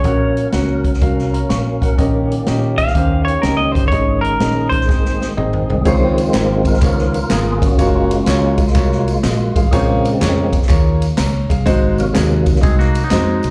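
A fat, lightly overdriven tonewheel organ with fast rotary speaker and chorus vibrato takes a solo from 5.9 seconds in this soulful, reverent uptempo gospel excerpt at 124 BPM in Db major, swinging over a woody vintage upright piano, a round, dark fingered electric bass, a punchy big-band drum kit, distant tambourine and handclaps, a clean, up-front electric guitar carrying the melody until 5.3 seconds, and a twangy second guitar entering at 12.6 seconds, all heard as a live club gig through the venue's PA with small-room ambience.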